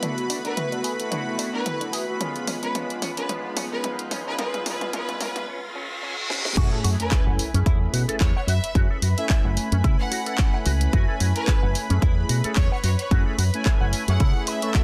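The electronic kick drum stands out most, punchy, tape-warm and up front once it lands at 6.6 s alongside a fingered electric bass that runs through an envelope filter and pumps against the sidechain. This sensual, sleek nu-disco piece moves at 110 BPM in 4/4 with a 16th-note swing in F# minor, opening on a build-up where a house drum kit with a cracking snare, handclaps, hi-hat, toms and crash plays a fill while a twangy, picked electric guitar with an envelope filter carries a riff in the background under a filter sweep. Mellow synth brass, round and brassy with ring modulation and vibrato, supplies accompaniment, and a lush unison pad, airy and thick with a soft attack, holds sustained chords that pump against the sidechain. A bright symphonic violin section enters at 0.4 s with an intense, bowed melody softened by a low-pass filter and tape echo, while a riser, reverse cymbal and sub drop sit in the background leading into the drop and its impact. 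The harmony moves from D6 to C#7 before settling on F#m7 at the drop, and the whole is cut from a longer piece with light reverb and a dense, heavily limited modern master.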